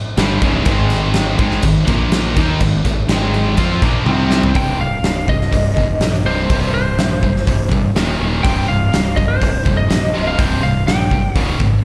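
An aggressive, menacing hard rock passage opens on a stack of picked electric guitar riffs: a cranked, overdriven amp tone and a scooped high-gain part sit in the background, while a double-tracked distorted guitar lurks very quietly until 4.5 seconds. A growly, fuzz-laden fingered bass and a huge acoustic drum kit, up front with a fat snare, punchy kick, bright cymbals and toms, join them, and a drum fill leads into a twangy, compressed lead guitar that carries the melody with slapback echo from 4.6 seconds. Lush hall reverb and some room ambience give the whole cut a big arena sound, as if lifted from a longer piece.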